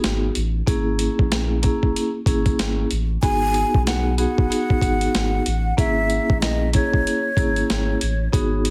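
Heavily compressed with a radio-like squeeze and a light reverb, this short boom-bap hip-hop excerpt feels tough and gritty, moving at 94 BPM in 4/4 with a 16th-note swing. The sampler-style drum kit sits up front, pitched down and gritty, with a thumpy kick, a medium-tuned snare and hi-hat that carry the air of a large room. Underneath, a soft dub sub bass hums deep and round, its sustained tone blending triangle and square-wave character. A soft-mallet vibraphone, also up front, rings out metallic and mellow through plate reverb, its fast motor vibrato shimmering over the G#m7 and A#m7b5 chords. At 3.2 seconds a close-miked silver concert flute takes the melody, breathy and slightly unsteady with a straight tone, trailed by plate reverb and tape echo until 8.3 seconds.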